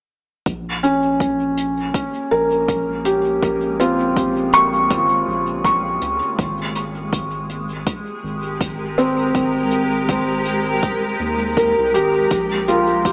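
Meditative and hazy, this ambient dub excerpt moves at 81 BPM in Bb dorian with a swung 16th-note feel, its felt-muted upright piano sitting up front with mellow, intimate arpeggios, audible action noise and analog delay. A deep, round sub bass and a tape-warm electronic kick arrive at 0.5 seconds alongside a brushed acoustic hi-hat carrying dub echo, while a blurred, full-bodied granular cloud pad fades in with its own reverb and sustains the chords from Bbm9 to Abmaj9 and finally Bb7(no3). The echo-heavy mix has light small-room ambience and a small-speaker character.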